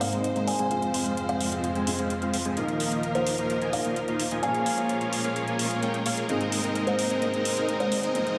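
Euphoric and triumphant, this short cut from a longer festival progressive house track sits at 129 BPM in a straight 4/4 and builds steadily in Ab major through its 8.4 seconds. A huge, thick, detuned supersaw riff sits up front, compressed and airy with a noise layer, its low-pass filter sweeping across the whole build while delay trails behind it. A woody, hollow kalimba carries the melody with ringing fingertip plucks and delay until 8.0 s, while a felt-muted upright piano murmurs dark, intimate accompaniment in the background, its action noise audible through analog chorus and delay. A lush, bowed symphonic string section holds rich sustained chords, and metallic, layered electronic hi-hats keep time. A very quiet riser slips in at 8.0 s over harmony moving from Abadd9 through Fm, Ebsus2 and Bbm7 back to Abadd9, all set in a dreamy mix soaked in plate reverb.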